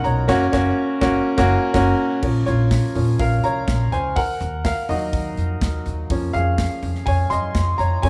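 Earnest and driving, this short cut from a longer piano-driven pop piece in straight 4/4 features a clear, intimate grand piano up front, its action noise audible and its notes sustaining long, as it takes the lead throughout, supported by woody, dark pizzicato upright bass entering at 0.1 seconds and an airy acoustic studio kit with tight kick, medium-tuned snare, hi-hat, toms and crash that plays from the start, the band hitting accents together from 0.3 to 2.2 seconds, all set in a rough home-demo mix with light small-room reverb.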